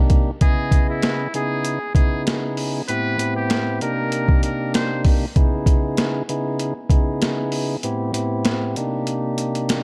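Boom-bap hip-hop at 97 BPM with a 56% swing on the sixteenths, this reflective, gritty fragment from a longer piece sits on a clean, clear tonewheel organ through a stopped rotary speaker and cassette tape, cycling C#m9, Am9 and Cm9 chords. Up front, a compressed, sampler-style drum kit, re-recorded in a small room, pairs a thumpy kick with a high-tuned snare and hi-hat, and the kick drops out from 7.8 s. From 0.4 s to 5.0 s a buzzy, breathy trumpet with a metal mute plays a thin, jazz-style solo line through tape echo, all set in a dark production with light reverb.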